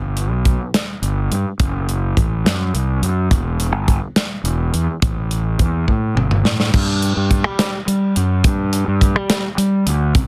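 A growly, fuzz-driven fingered electric bass sits up front from the first moment, joined at 0.2 seconds by a punchy, up-front studio drum kit with bright cymbals and a medium-tuned snare, weaving an intricate, bright math rock and midwest emo passage in 6/8 at 70 BPM in G major, where a drum fill from 5.9 to 6.7 seconds ushers in a new section within a dry, dense, heavily limited mix cut from a longer piece.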